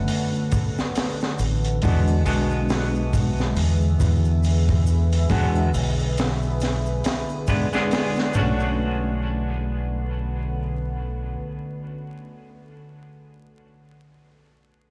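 Heard through a big sound system in a bare room, with vinyl crackle and a large studio reverb, this smoky, dark trip hop excerpt in B dorian moves at 69 BPM with a swung 16th feel over Bm7 and E7, as a crunchy breakbeat kit with gritty 12-bit sampler texture, a high-tuned snare and a tight kick sits up front beside a round, punchy dub bass with tube saturation, a bright, clean picked electric guitar shimmers through harmonic tremolo and tape echo, a detuned sawtooth pad with a sub octave and chorus sustains moody chords beneath, and a ringing tube shaker and triangle linger in the background until 8.7 s, just after the drums stop at 8.6 s, while the bass falls away at 11.4 s.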